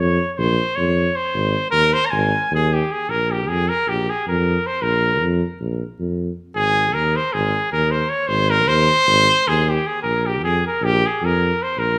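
A clear trumpet with light vibrato, distant and roomy yet up front, carries a wild, exuberant Balkan folk melody in 9/8 at 311 BPM in eighths, taking a classical-style solo until 3.1 seconds over a mellow tuba bass line that moves through Bbm, Ab and Bb5 harmonies, all set in a moderate recital hall reverb in this excerpt from a longer piece.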